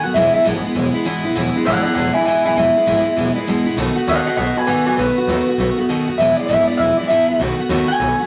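Swung eighth notes in 4/4 drive this rollicking, retro rock passage, cut from a longer piece. An electric guitar through a small old amp takes a clean solo, twangy, bright and slightly broken-up, while a picked dreadnought acoustic guitar also sits up front with full-bodied accompaniment and audible finger squeak. Beneath them a pizzicato upright bass adds a woody, thumpy, dark low end, and the whole performance sits in a moderate studio reverb.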